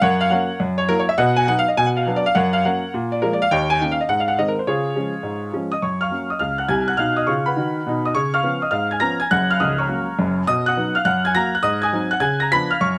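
A clear baby grand piano plays alone from the first second, opening this exuberant, swinging stride jazz excerpt in F# major at a brisk 207 BPM in 4/4, with a light swing on the eighth notes. The instrument sounds worn yet open, its notes carrying a long sustain and sitting up front in a close, detailed recording with light reverb. Its range stretches from the deep C#1 up to a bright B6. The opening passage moves through a busy run of changes, from F# to F#7, B and Bm, then on through G# and C#. A new section begins at 5.8 seconds and cycles through F#, B and C#7 before closing at 13.0 seconds on a tense C#7b9, as the passage is cut from a longer piece, tuned slightly low at A4 = 438 Hz.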